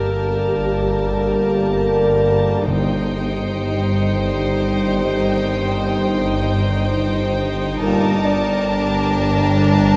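Cinematic and uneasy, this ominous passage in G minor unfolds in free time, cut from a longer piece and resting on a chord of G minor with an added ninth that shifts to C minor over G at 2.7 seconds before returning at 7.8 seconds. Chamber strings played sul tasto with soft attacks form the core: a violin section carries the high melody while a second violin line moves beneath it, violas with vibrato and an intimate, close sound supply accompaniment, and a dark cello section and background double basses hold steady on the low G. Above them, a further violin section adds a faint, smooth-topped texture reaching high into the register. A mellow, distant French horn section and a background trombone section sustain chords until 8.1 seconds. A dark, vintage grand piano with deep bass provides texture in the background, while a swarming, detuned granular drone on a low G lends an evolving tension. 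Very quiet timpani struck with hard mallets sound briefly between 2.7 and 3.9 seconds, and the whole ensemble sits in a wet scoring-stage reverb.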